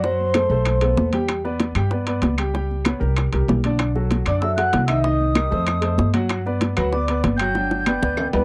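Sunny and danceable, this Afro-Cuban jazz piece moves at a brisk 192 BPM in straight 4/4, centered on G major. Vibraphone played with soft mallets carries the melody with a ringing, metallic tone and slow motor vibrato. A breathy, hollow metal flute sits higher and more distant as a second line; both parts sound at the start, drop out at 1.1 seconds and return at 4.3 seconds. Throughout, a clear concert grand piano with deep bass supplies accompaniment over a dark, woody pizzicato upright bass placed up front, while round, low-tuned bongos, damped high-tuned congas, background claves and vintage metal-shell timbales drive the groove, with a drum fill arriving at 7.6 seconds. The harmony wanders through colorful chords such as Am9/B, Bbm69 and F9 before settling on Gmaj7, captured in a dry, close 1970s-style studio sound.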